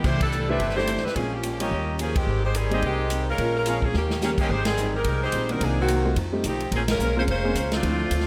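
A swinging 4/4 at 216 BPM drives this energetic, brassy big band jazz excerpt in Ab major, cut from a longer piece, with a punchy kick, airy ride and hi-hat, crash accents, and a drum fill at 3.9 seconds. An edgy, close-miked saxophone section carries the melody up front over woody pizzicato upright bass and a boxy, picked old acoustic guitar in the background. A clear baby grand piano with audible action noise enters at 0.5 seconds alongside vintage trumpet stabs with vibrato that drop out at 4.5 seconds, all in light reverb as the band hits accents over chords moving from C69 through Bbm7, Eb7 and Abmaj7 to Bbm9.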